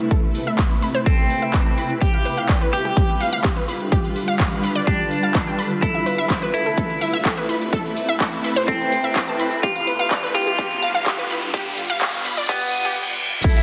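Expansive and bittersweet, this progressive house build-up at 126 BPM, cut from a longer piece, layers a shimmering, ethereal pad and a detuned sawtooth unison pluck arpeggio under a filter sweep, both pumping with sidechain, while a punchy up-front kick and a big-room kit of metallic hats, cabasa, handclaps and crash drive things along, a clean picked electric guitar melody enters at 1.1 seconds over Amadd9 and G7 chords, and a background riser from 7.6 seconds and a reverse cymbal lead to an impact at 13.4 seconds, all in a lush hall and a dense, heavily limited master.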